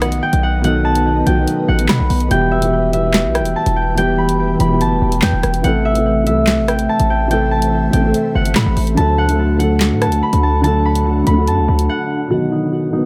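A half-time drill groove at 144 BPM in E minor drives this ominous, cold hip hop excerpt, where a sharp-snared, bright-hatted drum kit with handclaps and rim clicks and a punchy, heavy 808-style bass play until 11.9 seconds, while an up-front fingerpicked concert harp rings out the melody over a dark, boxy grand piano with audible action noise, both filtered and steeped in tape echo, an airy detuned pad sits in the background, and a barely audible downlifter sounds in the opening 2.3 seconds as the chords move from B through Em, Am and D back to B.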